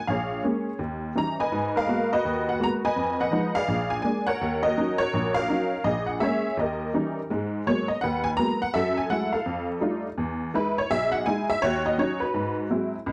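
Smoky and late-night, this short cut from a longer solo jazz piece features a detuned, jangly honky-tonk upright piano, up front in a dark, moderately reverberant club sound, swinging in 4/4 through rich minor-key changes before shifting to a new tonal center at 7.3 seconds.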